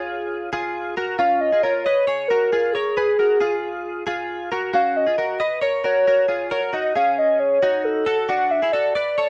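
Dry and close, with a 1970s studio intimacy, this breezy, youthful indie pop excerpt in straight 4/4 features a warbling, nostalgic lead synth carrying the melody, its detuned square and sawtooth tones mellowed by chorus, vibrato and slapback echo. Alongside, a bright, twangy, direct-recorded clean electric guitar picks compressed arpeggios through analog chorus and its own slapback echo. The harmony rests on C# before moving to D at 8.1 seconds.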